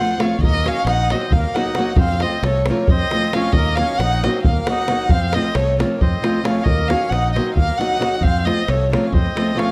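A dark, woody solo violin opens the excerpt together with a reedy accordion and a small, fingerpicked nylon-string guitar, and a tight, dry davul joins at 0.1 seconds. The violin sits up front with bittersweet, restless lines, colouring its bowed melody with vibrato and portamento. The full, rich accordion carries a second line in the mid-range, and the guitar supplies a shadowy acoustic accompaniment. A growly, direct fingered electric bass enters at 0.4 seconds and anchors the harmony as it moves back and forth between Ebm and F in a lopsided 7/8 Balkan wedding-band dance. The close davul drives the pulse, and a moderate recital-hall reverb with a dark, warm production gives the band a rounded, intimate glow.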